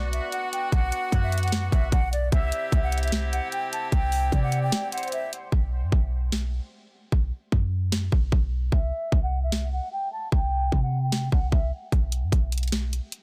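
Brooding, menacing trap hip hop in a half-time feel, cut from a longer piece, built around an airy silver concert flute melody with a crisp attack and lifted highs, softened by a low-pass filter and echoed by digital delay. Beneath it, a close-miked woodwind section holds bright, tight sustained chords with light vibrato, while a velvety synth lead with chorus and delay drifts quietly in the background as a second line. A deep, boomy 808-style bass with a sine tone and a fast, decaying attack sits up front next to the trap kit's hard-clipped kick, sharp snare and bright hats. After a short break at 4.7 seconds, the woodwinds and synth fall away and the hi-hats drop out at 5.5 seconds, leaving the bass and drums to carry the second half. The flute returns at 8.7 seconds under a filter sweep, and the dense, heavily limited master keeps the dry mix close and up front.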